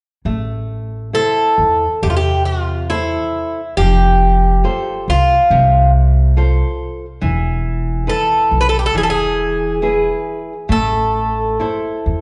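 Fado-style ballad in A minor at 69 BPM with a rubato feel, longing and mournful, where a growly, woody pizzicato upright bass and a dark, full-bodied fingerpicked nylon-string guitar open the excerpt before a bright, metallic Irish bouzouki enters at 1.1 seconds with an up-front picked melody over an Am, F, Esus4, E and Am progression, all set in the moderate reverb of a recital hall.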